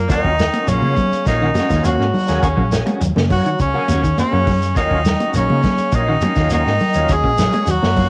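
A straight 4/4 afrobeat groove of muffled, punchy vintage drums, high-tuned thick-skinned congas and grainy shekere drives this funky, intense lo-fi home recording on cassette, where a round, dark hollow-body bass anchors the low end, an edgy, tape-coloured tenor saxophone sits up front on the melody, and in the background a veiled, cup-muted trombone section plays a second line, a gritty overdriven tonewheel organ churns through slow rotary speaker and chorus vibrato, a clean picked guitar with ensemble chorus spins arpeggios, and a semi-hollow guitar adds tremolo stabs, all over a single minor-seventh chord under light reverb.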